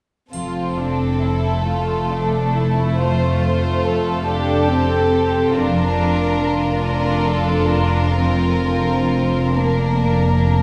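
Bathed in the wet reverb of a recital hall, this serene passage from a slow, romantic orchestral movement in F major drifts in 12/8 at about 41-47 BPM with a rubato feel, moving from F to Bb/F at 5.5 seconds. A dark, intimate violin section carries the melody up front, bowed sul tasto with light vibrato. Beneath it, a floating second violin line, rich violas, cellos set in the background and a soft double bass section form the harmony and bass, while a very quiet concert harp rings out fingerpicked arpeggios and a bright triangle sounds only until 2.1 seconds.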